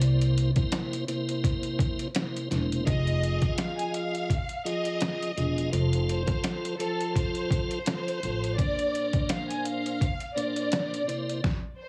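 Boom-bap hip-hop at 84 BPM with a light 16th-note swing, dark and reflective, cut from a longer piece: a muffled, pitched-down sampler drum kit with a thumpy kick sits up front beside a woody pizzicato upright bass that drops out at 8.5 s and a piping, lightly overdriven tonewheel organ with key click, chorus vibrato and cassette-tape grit, while a distant, lush bowed violin section with tape echo carries the melody from 2.9 s over chords moving from C7 through Fm7, F and Bbadd9, all wrapped in a heavily compressed, radio-like small-room sound.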